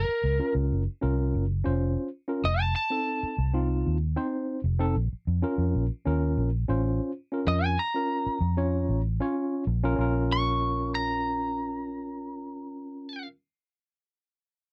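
A lightly driven lead guitar, dark, picked and slightly broken-up, carries a solo from the start to 10.0 seconds in this smoky, soulful straight-eighth soul blues at 95 BPM in Bb harmonic minor, moving over Gbmaj7, F7 and Bbm. A round, foam-muted vintage electric bass sits up front underneath, while a worn, slightly out-of-tune tine electric piano with light overdrive joins at 0.4 seconds, heard through its built-in speakers. The sound is dry and close, like a 1970s studio recording, and the piece is cut from a longer work.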